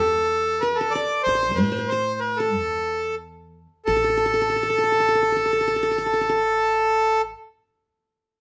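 A reedy, mid-forward accordion sits up front and carries the melody in this hypnotic, longing Arabic maqam ensemble piece in A maqam bayati, moving at 92 BPM in a straight 4/4 and tuned to A4 = 441 Hz. Beneath it a mellow, bright-edged qanun with plucked triple strings adds a second line, while a dark, woody pizzicato upright bass holds the low end. Cut from a longer piece, it sounds like a band playing live in one room with moderate studio reverb; the music shifts into a new section at 3.9 s, and the qanun is the last to fall away, at 7.5 s.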